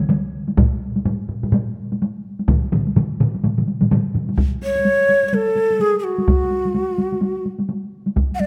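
Japanese traditional taiko drum ensemble music, driving and powerful, moves at 126 BPM in 4/4 with a 60% swing on the sixteenths. Several taiko ensemble parts stack up from the start, struck with hard and heavy sticks, some miked close and others carrying a small-room sound, all placed up front. A solo taiko drum, close and dry with heavy sticks, joins at 0.6 seconds and keeps playing until 8.3 seconds, while two of the ensemble parts drop out at 4.3 seconds. From 4.6 seconds an end-blown bamboo shakuhachi takes the melody between F#4 and F#5, breathy and soft in attack, with vibrato and a warm tone that sits forward in the mix. A wet recital hall reverb with a 1.6-second decay surrounds the sound, and the recording is a short cut from a longer piece.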